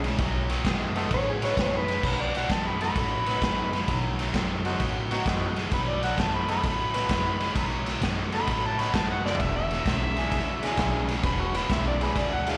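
Electric blues shuffle with a swaggering, gritty strut, heard as a live gig through the venue's PA in a reverberant recital hall, cut from a longer piece. A slightly broken-up, lo-fi guitar through a small old amp takes a brief clean solo with slapback echo before an amplified, overdriven harmonica enters at 2.1 seconds for a jazz-style solo full of tongue slaps, scooped notes and light vibrato. Underneath, a cranked stack guitar riffs in the background, tight close-miked horns punch octave-doubled stabs, a woody, thumpy upright bass plucks the low end, and a saturated, up-front garage drum kit with dark cymbals drops a fill at 9.2 seconds as the chords move from B7 to E7.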